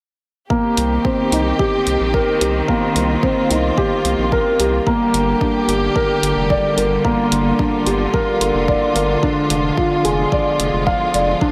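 Light reverb and a digital ambience frame this brief cut from a longer piano and strings electronica piece, which feels cinematic and intimate. At 110 BPM in 4/4 with a straight feel in C minor, a dark, mellow concert grand plays a riff up front, its short sustain trailed by delay. Alongside it, a studio string section, also up front, holds bowed, sustained chords with vibrato and a smooth top, breathing with sidechain pumping. A round analog bass with a fast attack shares that pumping, while an electronic kick drum and hi-hat, both layered and tape-warm from a small room, mark the pulse. The harmony moves from Cm7 to Gm at 4.9 seconds and on to Ddim/F at 9.2 seconds.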